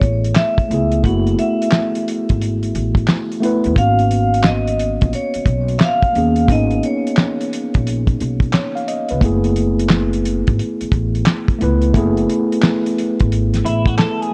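A swung 88 BPM groove from a dry, cloth-damped drum kit with a fat snare, tight kick, hi-hat and handclaps anchors this nostalgic, melancholic lo-fi hip hop cut in F# dorian, where woody pizzicato upright bass and a mellow, cassette-softened tine electric piano carry the F#m11 and G#m11 changes, a ringing vibraphone with slow motor vibrato and tape echo sings the melody until 7.5 seconds, and a clean, compressed electric guitar slips in at 13.7 seconds just before the cut ends.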